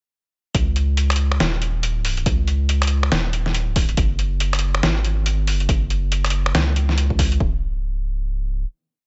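From 0.5 s, a dark, cavernous deep dubstep piece at 140 BPM opens straight into its drop with a half-time feel and swung 16ths. A punchy, layered electronic kick sits up front beside a gritty, overdriven, compressed and pitched-down sampler-style trip hop kit of snare, hi-hat and finger snaps, both drum parts carrying studio reverb. Beneath them, a deep, round, soft sub bass of triangle and square waves plays chopped phrases, and after the drums drop away by 7.5 s the sustained bass carries on into the closing final-note section until 8.7 s.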